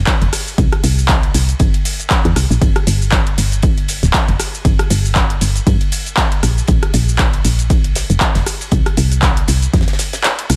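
The rhythm sits in a steady 4/4 at 118 BPM with a swung sixteenth-note feel, setting up a hypnotic deep house groove in G minor. A punchy, overdriven electronic kick is placed up front and carries the pulse until it stops at 9.8 seconds, shortly before this excerpt ends. Beside it, a layered electronic kit of handclaps, rim click, shaker and metallic hi-hats is also up front with overdrive. Further back, a damped acoustic kit adds a dark ride cymbal and a fat snare, dry and rolled off at the top. The woody FM bass is soft and round, with a fast attack that decays into a mellow tone, and sidechain pumping gives it a breathing motion. The mix stays close with little reverb, leaving a warm feel across the single section.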